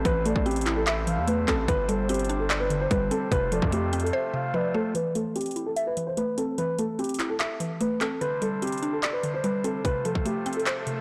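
A dark, intimate concert grand piano with audible action noise carries the melody over a woody, round mallet-like synth pluck and a soft reed chamber organ, setting an eerie, menacing half-time trap mood in this blown-out, overdriven hip hop piece. Hard-clipped kicks, metallic hats and handclaps drive the beat alongside a heavy, aggressive 808-style bass that stops at 4.1 s, while a smooth gliding portamento lead with vibrato hovers in the background. The drums drop out briefly before a filter sweep opens the second section at 4.9 s, and a very quiet electronic swell rises near the end.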